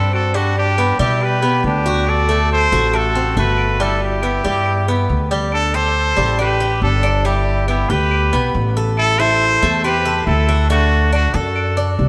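A muted trumpet with a nasal, brilliant tone, vibrato and tape echo carries the melody up front, while a second, distant trumpet with scooped notes plays a quieter line beneath it, over picked arpeggios on a metallic, double-strung Cuban tres and a growly, thumpy pizzicato upright bass in this relaxed, warm Cuban son and guajira at 139 BPM in G major. Very quiet woody claves enter at 0.1 s and stop at 11.8 s, and the whole is heard from further back in the room through a moderate plate reverb. The chords move from G through D7 and G6 to Am7 and D in this passage cut from a longer piece.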